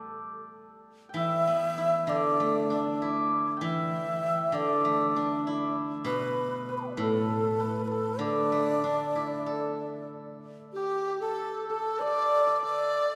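In a free, rubato 4/4 around 97 BPM in the D zhi mode, this graceful, pastoral excerpt of Chinese traditional chamber music opens on an up-front, silvery steel-string zither plucked with fingerpicks and a shimmering hammered dulcimer, joined at 1.2 seconds by a breathy, bright low xiao singing the tongued, vibrato-laced melody, until the zither falls away at 10.7 seconds as a pure, buzzing-membrane large dizi steps forward with soft-attack, expressive vibrato, all bathed in a wet church reverb.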